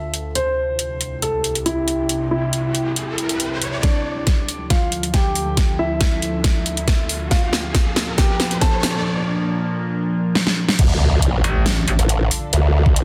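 A dark, mellow grand piano melody with audible action noise and dub echo opens this menacing, chaotic heavy wobble dubstep excerpt in D minor at 138 BPM in half-time, over an evolving, detuned wavetable pad with sidechain pumping, a dubstep kit with a huge clipped snare and metallic hats, and electronic risers and impacts, before an overdriven, knocking kick joins at 3.8 seconds and the build-up breaks into a drop at 10.8 seconds, where a formant-sweep wobble bass and, at 11.4 seconds, a bright, aggressive FM wobble bass push up front in a dense, heavily limited hall-reverb mix.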